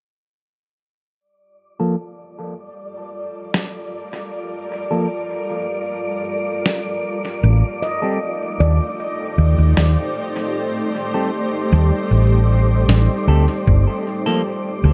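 Ambient dub in G minor at 77 BPM, this spacious, deep excerpt sets twangy clean electric guitar stabs through a low-pass filter and dub echo from 1.8 seconds over a blurred, detuned granular cloud pad and an airy, wind-like noise texture, with a muffled, pitched-down electronic snare up front, a round, punchy hollow-body fingered electric bass arriving at 7.4 seconds, a ringing stainless-steel handpan with analog delay in the background, and a thumpy electronic kick landing at 13.7 seconds as the chords move from Gm9 to Am7b5 and back in an echo-heavy mix.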